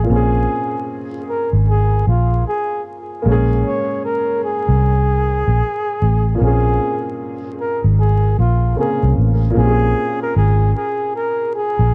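A loping 4/4 groove with a moderate swing on the sixteenths gives this lo-fi hip hop fragment, cut from a longer piece, its lazy, hazy, nostalgic sway. Up front, a breathy flugelhorn carries the melody with a whispered, soft-attack tone and gentle vibrato, sounding intimate and jazz-inflected through a low-pass filter and tape echo. Beneath it, a dark upright piano supplies mellow, woody accompaniment over a single minor ninth chord, its smooth, vintage colour further softened by cassette tape grain, filtering and its own tape echo. A foam-muted electric bass sits prominently in the mix, round, amped and punchy, anchoring the low end. Light reverb, an echo-heavy blend and a bed of vinyl crackle wrap the whole fragment in a dusty haze, and a new section arrives at 9.6 seconds before the clip ends at 11.9 seconds.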